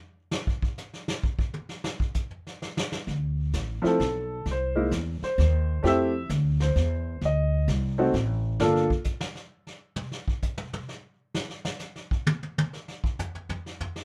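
Close, natural small-room sound with light reverb frames this late-night, moody fragment of a jazz piano trio swinging in 3/4 at 131 BPM in D minor, where a vintage brush drum kit with a punchy kick and rolled-off top plays alone until a woody, thumpy pizzicato upright bass enters at 3.1 seconds and a smooth, warm upright piano carries the melody from 3.8 seconds, both stopping at 8.9 seconds to leave the brushes on their own.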